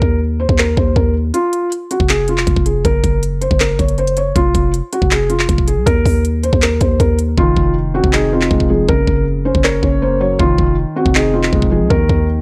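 Hard-hitting and menacing, this half-time trap clip pairs a soft, felt-muted upright piano melody, its action noise audible and tone filtered and touched by analog delay, with a growling, buzzy 808-style bass and a knocking, crisp electronic drum kit of kick, handclaps and hi-hat, all up front. At 7.4 seconds a dark, boxy concert grand piano enters with filtered accompaniment and deep bass as the hi-hats drop out. The dry, gritty recording carries transformer saturation and a touch of studio reverb, and the clip is cut from a longer piece.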